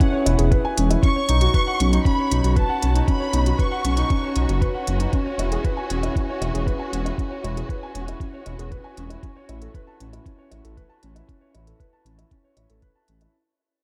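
Piano and strings electronica at 117 BPM in 4/4 with a straight feel, this short excerpt in E major feels tender and hopeful as it moves through E6, Badd9 and Aadd9 over a fade-out. An up-front upright piano carries the riff with a woody, slightly detuned tone and a tape echo, while a symphonic violin section sings a lush, dark melody with vibrato and a soft attack that ends at 4.6 seconds. Beneath them, a close studio string section holds bowed chords with expressive portamento, shaped by sidechain pumping and a low-pass filter. A deep, rumbling detuned saw bass enters at 0.3 seconds, saturated and beating, and pumps with the sidechain alongside a muffled, thumpy sampler-style kick that sits up front. Smooth electronic hi-hats with a tape-warm sheen complete the groove, and a small room reverb gives the mix an intimate space.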